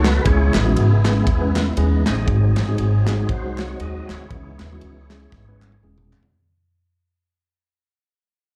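Heard through a club PA with roomy reverb, this solemn, soulful uptempo gospel excerpt in C# minor swings at 118 BPM as a lightly overdriven tonewheel organ solos through a fast rotary speaker over a mellow tine electric piano with slapback echo, a growly, woody upright bass played up front, a tight-kicked drum kit that closes with a fill from 5.3 seconds, and crisp background handclaps, all moving from C#m7 to G#7 and back while the sound fades out.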